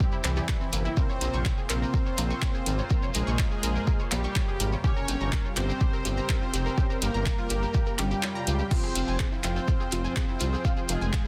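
A deep, tape-warm electronic kick sits up front from the first beat, joined at once by a thick, nasal unison lead with vibrato, a background bed of lush, warbling vintage pad chords, a punchy arpeggiated unison pluck, a smooth phased supersaw second line and a grainy acoustic shekere. This is hypnotic, dramatic melodic techno at 124 BPM in 4/4, set in F harmonic minor, with the harmony moving from C through Bbmadd9 and Gdim to Fmadd9. At 0.2 seconds a dark, rumbling detuned saw bass and a layered deep house kit with metallic hats, handclaps and crash arrive, the snare carrying soft clipping. Sidechain pumping breathes through the lead, supersaw, pad, pluck and bass, while dub echo trails the supersaw and pluck and delay follows the lead. Far beneath, a very quiet, muted and resonant filtered chord stab and a swarming, tense granular drone add shadowy texture. An electronic swell enters at 8.0 seconds and the kick drops out from 8.2 to 8.7 seconds within a dense, heavily limited, dry mix cut from a longer piece.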